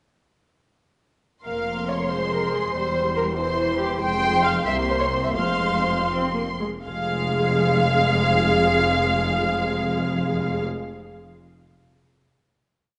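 A veiled, up-front muted violin section carries the melody over a second line of smooth-topped studio violins in this stormy, dramatic classical-period movement for string orchestra in F minor, a whole piece in 6/8 at 76-95 BPM with rubato. Distant con sordino violas sustain dark chords and doubling double basses enter from 1.4 seconds, with lush muted cellos holding a sustained bass from 1.5 seconds. The music slows from 3.4 seconds to a held final chord at 6.9 seconds, and a moderate scoring-stage reverb surrounds it all.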